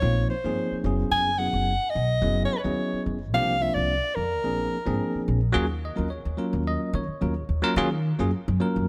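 A straight 4/4 pulse at 108 BPM drives this short, intense cut of electric jazz fusion, anchored by a dark, woody upright bass plucked on gut strings and a bell-like tine electric piano moving through suspended ninth chords before settling into Eb minor at 5.6 s. Up front, a mellow soprano saxophone plays the solo melody with subtone, light vibrato and scooped notes, its soft attack trailed by slapback echo until it stops at 5.3 s, leaving the thumpy bass and the bright, clean electric piano to carry on. Light reverb gives the trio the ambience of a small room.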